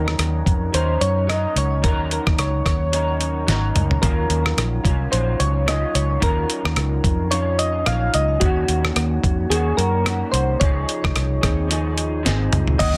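A dense, heavily limited mix with light reverb carries this lonely, hazy bedroom-pop excerpt, where soft, mellow electric-piano-like synth keys with analog chorus sing the melody over a slightly broken-up, lo-fi electric guitar through a small old amp with chorus and vibrato, a dark, foam-muted fingered bass and a gritty, tape-toned sampler-style drum kit with thumpy kick, fat snare and fills at 3.5 and 12.3 seconds, before a crystalline FM synth bell and a very quiet, lush detuned unison pad slip in at 12.8 seconds.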